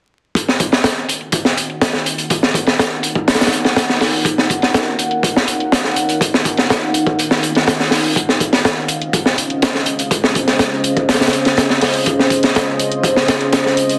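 Swaggering and funky, this breakbeat excerpt rides on a crunchy, saturated acoustic kit with a punchy kick and high-tuned snare, gritty and up front with a rolled-off top, layered with a bright electronic hi-hat tucked in the background, while from 1.3 seconds a deep, moody sawtooth-and-sine pad with a sub octave, chorus and sidechain pumping holds sustained Ebm7 and Dbmaj7 chords, the mix sitting in a moderate plate reverb under a dense, heavily limited master dusted with vinyl crackle.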